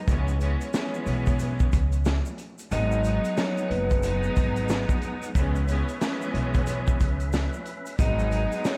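A swung boom-bap groove at 91 BPM in C# minor drives this dark, tough hip-hop excerpt, with a gritty, punchy garage drum kit and a woody, thumpy pizzicato upright bass up front, a grainy tube shaker tucked behind, and a smooth bowed string section filtered through cassette tape. At 2.7 seconds, as the kick is briefly muted, a bright, ringing vibraphone melody with tape echo enters alongside a fat, lightly overdriven tonewheel organ on fast rotary speaker holding sustained chords in the background. The harmony moves between C#m7 and G#m7 under light reverb, small room ambience and vinyl crackle.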